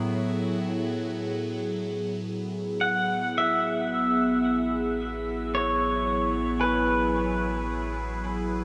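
A slow, straight 3/4 pulse carries this luminous ambient excerpt, which opens on an evolving, morphing wavetable pad of sustained chords with a slow attack, phaser colour and a bright sine tone held up front in a huge, wet reverb. At 2.8 s a clean, compressed pedal steel guitar enters with a fingerpicked slide melody full of volume swells, trailed by diffuse delay, while a round, deep, warm sub bass fades in from 3.4 s. From 6.6 s a dark, mellow electric guitar adds lush chorused arpeggios in the background, soaked in ambient delay.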